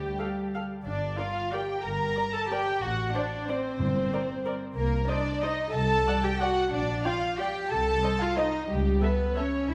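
The opening moment brings two dark violin sections together with warm cello and double bass sections, all entering at once in a brooding classical orchestral ballroom waltz at 184 BPM in 3/4, its beats uneven and pulled by rubato. One violin section carries the melody while the other traces a second line, both woody and lush with vibrato, played sul tasto and set distant in the background. Beneath them the cellos sound pure and floating with a soft attack, and the double basses sit close and up front with light vibrato, together anchoring the bass. A dark viola section slips in at 0.2 seconds with intimate, smooth-topped accompaniment, and a brief, articulate timpani G struck with hard mallets sounds from 3.8 seconds. The harmony moves through minor chords and dominant sevenths, from Dm and Gm toward a closing A7/C#, lending a bittersweet pull, while a recital hall reverb of 1.4 seconds wraps the strings in a wet glow throughout this cut from a longer piece.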